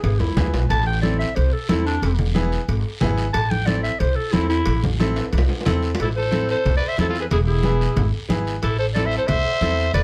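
Lightly reverberant, this fiery, danceable cumbia clip at 182 BPM in A harmonic minor opens on a drum fill beneath a gritty, growling vintage clarinet solo with scooped notes, backed by woody, thumpy pizzicato upright bass, a bright upright piano, thin-skinned hard-hand congas, ringing cowbell and timbales and a dry, raspy guiro, until a second fill at 5.2 s brings in a punchy, brilliant growling trumpet at 6.0 s as a second line.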